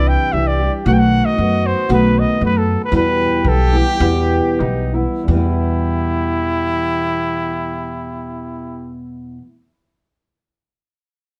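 Dramatic and passionate, this mariachi-style Mexican folk piece moves in a straight 2/4 at 83 to 118 BPM in E harmonic minor. The lead trumpet carries the melody up front with light vibrato and a classical bearing, bathed in plate reverb. A second, mellow trumpet plays a punchy supporting line from a more distant, roomy position. A full-bodied, thumb-plucked nylon-string guitar gives deep classical accompaniment up front, and a woody pizzicato upright bass on gut strings adds a thumpy low end. The chords pass from Cadd9 to B7 and settle on Em at 2.9 seconds, where the tempo begins slowing until a new section opens at 5.3 seconds. Both trumpets stop at 8.9 seconds, leaving guitar and bass briefly in a wet small room with a dark, warm production.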